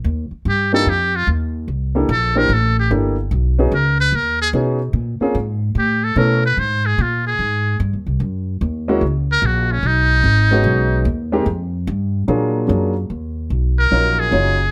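A woody pizzicato upright bass opens this moody, smoky small-group swing excerpt in Eb minor at 147 BPM, joined almost at once by a buzzy, thin metal-muted trumpet with light vibrato and a warm, intimate grand piano with audible action noise, all up front in light reverb, before the trumpet drops out at 11.1 s and returns for a short solo from 13.8 s over an Ebm7 chord.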